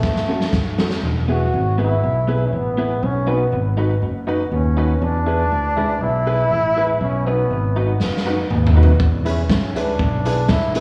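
A mischievous, driving ska track at 120 BPM in a straight 4/4, heard as a cut from a longer piece recorded live through a club's PA, with small-room ambience and club reverb around it. A clear, up-front trombone carries the solo melody with light vibrato in a pop style, treated with dub echo and slapback echo. Beneath it, a round, fingered electric bass sits up front, while a worn, woody upright piano with audible action noise and a slightly detuned, intimate character plays stabs in the background with slapback echo. A clean, compressed electric guitar joins at 0.3 seconds as background accompaniment, colored by analog chorus, dub echo and slapback echo. The gritty, saturated garage drum kit, with a punchy kick, medium-tuned snare and a rolled-off top, opens with a fill over the F#m chord, drops out at 1.0 seconds, and returns with another fill at 8.0 seconds, its hits trailed by dub echo. 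Over the main section, the harmony moves between E and B.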